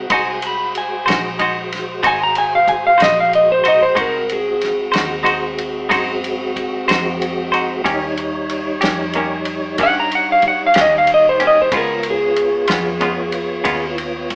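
A roomy, AM-radio-toned recording of a band playing live together in one room, with moderate studio reverb, frames this rollicking, gritty slow blues in 12/8 at 62 BPM in Ab mixolydian, cut from a longer piece. Up front, a clean lap steel guitar takes a slide solo with volume swells, backed by a bright, twangy picked electric guitar with tremolo, a tonewheel organ holding sustained chords through a slow rotary speaker with key click and chorus vibrato, a round, foam-muted fingered bass, and a soul drum kit with a fat snare, punchy kick and dark ride cymbal. The chords move from Ab7 to Eb7 at 7.9 seconds and then to Db7 at 11.7 seconds.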